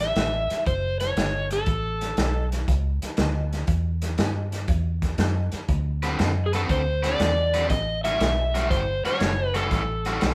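A live-in-one-room sound with moderate studio reverb gives this soulful, gritty electric blues shuffle in A mixolydian a close, cohesive feel at 119 BPM, swinging over A13 and D13 chords. A dark, overdriven slide guitar carries the melody up front, breaking off at 2.5 seconds and returning at 6.5 seconds, while a round, foam-muted vintage fingered bass and a saturated, punchy breakbeat kit with a rolled-off top drive the groove throughout. At 6.0 seconds a bright, picked semi-hollow guitar joins with an overdriven riff, sitting a little further back in this fragment of a longer piece.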